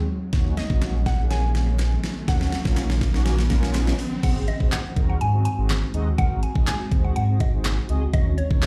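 Driving and bittersweet, this dance-pop excerpt opens on a build-up, with a drum fill, a filter sweep and a background riser climbing toward a drop at 4.2 seconds. A deep, full sub bass with an added octave sits up front alongside an electronic, layered pop drum kit, whose knocking kick, deep snare, hi-hat, handclaps and crash carry an overdriven edge. Mellow synth brass plays a dark, round, sawtooth accompaniment with chorus, phaser and vibrato, while a cloudy, blurred granular pad holds sustained chords in the background through its own reverb; the bass, brass and pad each pump against the beat. A glassy, crystalline wavetable pluck carries the melody until 3.0 seconds, and after the drop a woody, percussive FM mallet pluck with chorus and phaser takes over the lead. A very quiet, crisp group handclap adds a close, dry human touch, and the whole mix carries little reverb yet sounds as if played through a big sound system in a bare room.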